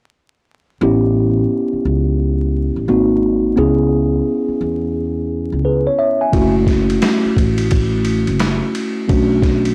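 A mellow tine electric piano and a woody upright bass open this cool, smoky jazz-hop excerpt together at 0.8 seconds, moving through seventh chords from A7 to G#7 and C#m7 at an unhurried 87 BPM in 4/4 with a swung sixteenth-note feel. The electric piano sits up front, clean and sounding as if heard through its built-in speakers, with a plate reverb adding a soft halo around its chords. The plucked upright bass is acoustic, with steel strings and a touch of tube saturation giving its low notes some body. At 6.3 seconds a boom bap sampler-style drum kit arrives with hi-hat, ride cymbal, a thumpy kick and a medium-tuned snare, pitched down, compressed and re-recorded in a large room. The harmony shifts to F#m7 as the drums come in and settles on Bm9 near the close. The whole recording has a dry, gritty hardware character, with transformer saturation, vinyl crackle and a moderate studio reverb lending it a dusty, late-night atmosphere.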